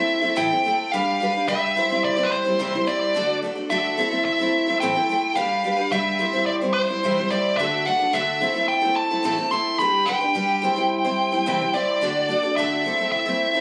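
A nasal lead guitar with a parked wah and a picked twelve-string acoustic guitar begin together at 0.0 seconds, setting a warm, open-road rock mood at 108 BPM in a straight 4/4. The electric lead carries the melody high up, between B4 and C6, its overdriven tone colored by tape echo and sitting up front. Beneath it, the twelve-string supplies accompaniment from A2 to C5, its shimmering, octave-doubled voice also placed close and forward. The harmony circles through Am, G, C and D in C major, returning to Am as this piece of a longer performance closes at 13.6 seconds. Moderate studio reverb and compression frame the pair, and the whole performance was captured on a phone in the room.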